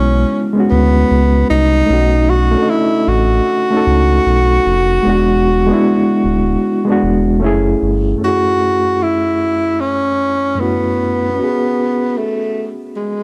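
A small, moderately live room frames this reflective, melancholic lo-fi hip hop excerpt, with a breathy tenor saxophone carrying the melody in a mellow, jazz-style subtone, with vibrato and scooped notes, set in plate reverb and analog delay. Beneath it, a gritty, overdriven reed electric piano plays the accompaniment through a combo amp with fast tremolo and a cassette-tape character, while a deep sine sub bass with an added octave sits up front until 8.1 seconds. At 76 BPM in F# minor with a swung 16th-note feel, the chords move through C#7sus4, B9, E7 and F#m9 before returning to C#7sus4 in the closing section, which begins at 8.2 seconds.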